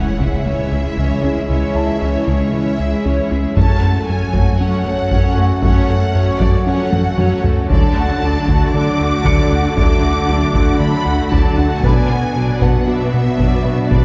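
Vast and futuristic, this hybrid orchestral-electronic film cue excerpt moves at 116 BPM in F# minor, as a very quiet electronic impact opens over lush, vibrato-rich bowed violins carrying the focused melody, with a second violin line, smooth violas and cellos sitting in the background, while a warbling, vintage analog drone holds sustained chords, a round, deep, dark analog bass plays a riff, a tight, detuned sequenced synth spins very quiet arpeggios, and a soft, felt-muted upright piano adds intimate texture with audible action noise; saturated, hard-stick taiko drums strike briefly, return at 3.6 s and play a fill at 6.9 s, all set back in a wet recital hall over C#m, F#m, D and Bm.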